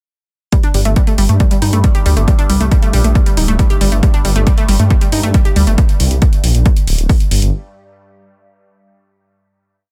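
A punchy, up-front kick pounds out a straight four-on-the-floor pulse at 137 BPM in 4/4, with metallic programmed closed and open hi-hats that pump against it, setting up an intense, dark slice of driving peak-time techno in G minor. A thick, detuned sawtooth bass enters at 0.7 seconds, its saturated, beating tone and galloping sixteenth-note line sitting menacingly close and ducking in time with the kick. Over this, an analog pluck repeats a 16-step sequence between G3 and G4, mixing round and bright edges with ring modulation and a filter sweep, colored by chorus, cassette tape grit, dub echo and sidechain pumping. From 1.2 seconds a resonant drone with moving overtones fades in slowly in the background, washed in chorus, phaser and its own reverb, also pumping with the kick. The pluck and drone drop out near 5.8 seconds, leaving the drums and bass to carry the groove to its close, all within a dense, heavily limited modern master and a digital ambience.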